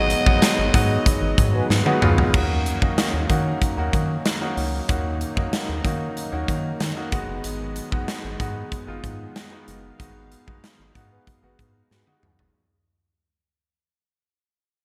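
1980s-style pop at 94 BPM, uplifting and romantic, in which a raspy, gritty alto saxophone with delay states a brief melody over the first 1.7 seconds, a clear concert grand piano with audible action noise and a bouncy square bass carry the accompaniment, a very quiet, warbling analog pad sustains G#m7 and D#m7 chords, a big rock drum kit with gated reverb, a punchy kick and drum fills sits up front, and mellow synth brass stabs with chorus reappear at 11.1 seconds, set in a bright digital production with lush hall reverb as this excerpt fades out from 2.3 seconds.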